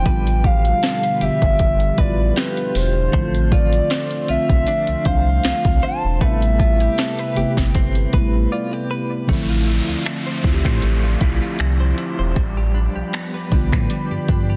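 A hollow, woody clarinet-like synth lead with vibrato and tape echo carries the melody up front until 8.5 seconds in this moody, sensual contemporary R&B excerpt, over muted felt-like synth keys, a dark analog pad in the background, a clean direct-recorded electric guitar playing arpeggios through tremolo and tape echo, a deep sine-and-triangle sub bass with octave, a soft round pluck that sounds briefly at the start and returns around 7.4 seconds, an overdriven smooth R&B drum kit with finger snaps, soft kick, sharp snare and hi-hat, and an electronic downlifter entering at 9.3 seconds after a brief break, all in a dry, dense, heavily limited modern mix.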